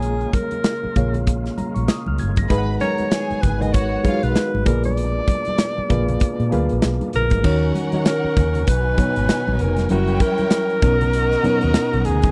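Swung sixteenths at 97 BPM in 4/4 carry this cinematic, smooth 1970s-style soul excerpt, where an up-front alto saxophone with scooped notes and vibrato sings the melody over a reedy, worn electric piano with fast tremolo, a gritty overdriven tonewheel organ on slow rotary sitting very quiet beneath, a dark, round foam-muted fingered bass, a tight acoustic drum kit of crash, hi-hat, kick and snare, very quiet ringing congas from 0.3 s, and a lush, distant bowed violin section adding a second line from 2.5 s, captured in a dry, close studio sound as the chords move from Bbm7 through Bb7b9 to Bmaj7.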